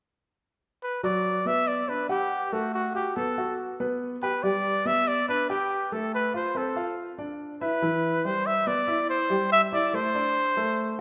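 A breathy trumpet enters at 0.8 s with a soft attack, light vibrato and scooped notes, carrying an up-front jazz solo melody over a warm grand piano accompaniment from 1.0 s, in a sophisticated, lively jazz passage cut from a longer piece at 142 BPM in G major with a straight 4/4 feel, moving through jazzy harmony that first settles on Gmaj9 and ends on D7(no3), all bathed in the wet reverb of a scoring stage.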